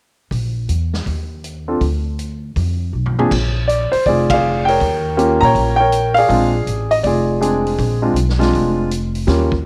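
Light reverb and a small-room ambience give this excerpt from a longer jazz piano trio performance a close, natural sound. At 161 BPM in 4/4 with a swung eighth-note feel, the mood is sophisticated and relaxed. A woody pizzicato upright bass with steel strings sits up front from the start, and the big-band drum kit, heard lower in the mix, brings a punchy kick, a medium-tuned snare, hi-hat, ride, crash and toms in a big-room acoustic setting. The clear grand piano enters at 1.7 seconds as the lead voice, intimate and up front, with its action noise audible. A drum fill at 2.9 seconds leads into a section in B-flat mixolydian that moves through Bb7 and Eb7, and a band accent lands at 4.2 seconds.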